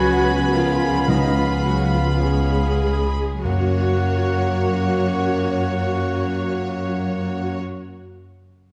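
A tender, lush orchestral passage in F# major unfolds at a slowing, rubato 47-59 BPM, opening with a violin section carrying the melody over airy flute, clear oboe, mellow clarinet and softer second violins, while warm bassoon, violas, dark French horns, very quiet ringing harp, mellow trumpet stabs, rich cellos and up-front double basses fill out the harmony, timpani with hard mallets entering at 1.1 s as the C#7 chord resolves to F# at 3.4 s, all in a reverberant scoring-stage space.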